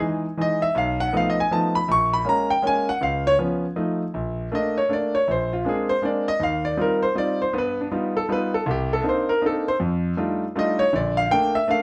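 A swung waltz in three carries this playful, relaxed jazz fragment, cut from a longer piece, where a clear concert grand piano plays alone throughout its 11.8 seconds. The opening phrase drifts through chords such as Emaj7, B7#11 and C#7 before settling at 4.1 seconds into a second pass that moves from Bbmaj7 through Eb69, G7b13 and F13 back home to Bbmaj7. The piano sits up front with a deep bass and a smooth, vintage character, framed by a moderate studio reverb.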